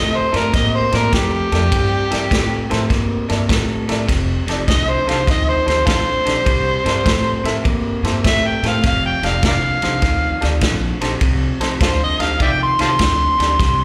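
An overdriven harmonica opens this soulful, swaggering electric blues shuffle, carrying the melody over a slightly broken-up electric guitar riff and a woody, thumpy upright bass on gut strings. The harmonica is up front as a jazz-style solo throughout, gritty and amplified, with a soft attack, light vibrato, scooped notes and tongue slaps, and a slapback echo trails it. At 0.3 seconds a vintage drum kit joins with a punchy kick, a medium-tuned snare and ride cymbal, sounding natural and close. A bright upright piano enters at the same moment and sits in the background, its brilliant tone ringing with long sustain and its own slapback echo. The picked guitar, heard through a small old amp, has a lo-fi edge and shares that echo, while the harmony moves between C13 and F13. The whole piece sounds like a live gig heard through the venue's PA, with club reverb and small-room ambience, and this cut from a longer performance ends at 13.8 seconds.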